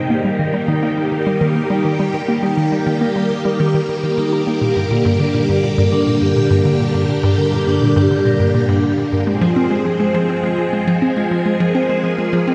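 A straight 4/4 pulse carries this cosmic, expansive stretch of sequencer-driven space music, cut from a longer piece and set in a vast, echoing cathedral reverb. A hollow, bouncy square-wave pluck repeats a detuned riff with chorus and delay, while a metallic vibraphone with medium mallets and fast motor vibrato plays airy arpeggios through delay and a low-pass filter sweep. Up front, a swirling, vintage string machine holds bright sawtooth chords from Eb to Gm to Fm, its ensemble chorus and phaser lending a warbling character.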